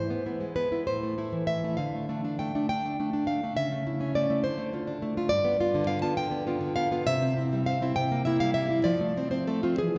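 In a rubato 6/8 at 67 beats per minute, this intimate, wistful romantic excerpt in A minor features a solo nylon-string guitar, dark-toned with fresh strings, fingerpicked up front with audible finger squeak across a range from G2 to A5, moving from E/G# and Am through Dm, G7 and C7 to F, all bathed in a church reverb that rings for 3.1 seconds.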